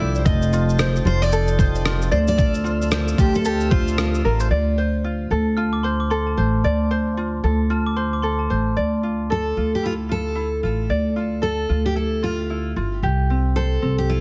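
A woody, up-front pizzicato upright bass anchors this tender, reflective acoustic pop passage in D minor at 113 BPM, with a swung 16th-note feel, a fingerpicked bright ukulele playing throughout and a full-bodied picked dreadnought guitar carrying the melody through a digital delay. A gritty, thumpy sampler-style kit of kick, rim click and shaker joins a smooth tonewheel organ on slow rotary speaker in the opening, and both drop out at 4.5 seconds; a soft, bell-like glockenspiel with rubber mallets then takes a second line at 5.6 seconds before the guitar returns at 9.3 seconds. The harmony moves from F7 and Dm7 to Dmadd9 and C, all under light reverb and a heavily compressed, radio-like sound in this section cut from a longer piece.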